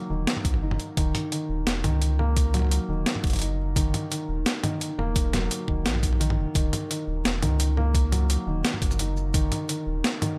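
An up-front, sampler-style drum kit drives this cinematic half-time drum and bass excerpt at 172 BPM in 4/4. Its hi-hat, shaker, toms and high-tuned snare sound gritty, compressed, pitched down and overdriven, as if re-recorded in a large room. Beneath it, an electronic kick adds a produced, knocking thump from 0.4 to 9.4 seconds, while a saturated sub bass holds the low end between Eb1 and Db2, deep and thick with a triangle tone, fast attack and long sustain. Across the whole clip a felt-muted upright piano plays soft, mellow arpeggios from Eb3 to Eb4, dark and intimate with a vintage smoothness and coloured by tape echo. The harmony sits on an Eb5 chord from the very start, and light reverb gives the piece its spacious air.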